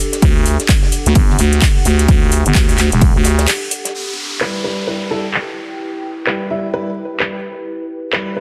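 A growling, thick FM bass pumps through the first 3.5 seconds of this swaggering, bouncy bass house excerpt, beside a punchy, overdriven electronic kick that drops out at 3.1 seconds, at 129 BPM in E minor with a 16th-note swing over a Dsus4 chord. An overdriven house kit with metallic hats, handclaps and ride runs under a warbling, detuned, chorused pad that pumps throughout, while a dry soul kit with a smooth snare sits in the background. At 3.9 seconds the harmony moves to Em, a downlifter sounds and a filter sweeps the drums, and at 4.4 seconds a dark, boxy grand piano enters with delayed, pumping stabs.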